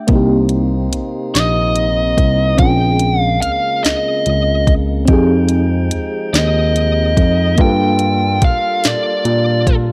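A mellow, warbling FM electric piano with chorus and tremolo opens this slow, sultry six-eight R&B excerpt at 48 BPM, joined at once by a lightly overdriven tonewheel organ with key click holding sustained chords, a barky tine electric piano carrying the bass up front, and a smooth, tape-warm R&B kit with soft kick, sharp snare and warm hats, before a biting, overdriven lead guitar enters at 1.3 seconds with a picked melody over late-night Cm7, Bbm9, Fm9 and Gm9 harmony in digital ambience.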